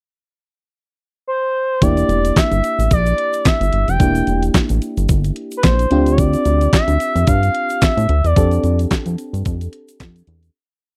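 A smooth, sawtooth portamento lead with vibrato sings hook phrases up front from 1.3 seconds, its chorus and slapback echo adding sheen before the line stops at 8.8 seconds. This short, slick, late-night piece of early-eighties boogie funk moves at 110 BPM with a swung sixteenth feel. From 1.8 seconds a crisp 8-bit drum machine lays down a thumpy four-on-the-floor boogie beat with clap-layered snare and hi-hat, while a fat, glossy chorused synth bass plays a syncopated line, a glassy, bell-like FM electric piano holds rootless chords, and a grainy egg shaker ticks sixteenths in the background, all in a dry, close studio sound that fades out over the final seconds.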